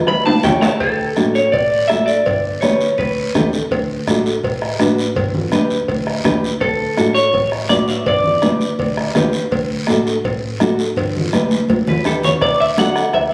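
Festive and danceable, this straight-feel cumbia cut from a longer piece rides on a bright, twangy clean electric guitar melody, soaked in spring reverb and slapback echo, whose phrases arrive at 0.1, 6.6 and 11.9 seconds. Beneath it, a fingerpicked, full-bodied nylon-string guitar plays through a G and D alternation, while a woody, thumpy pizzicato upright bass and a soft-beater bombo anchor the low end. Ringing high-tuned congas struck with hard hands, vintage metal-shell cowbell and timbales and a raspy guiro fill the rhythm section, all heard through a phone in a club with a lush, reverberant room sound.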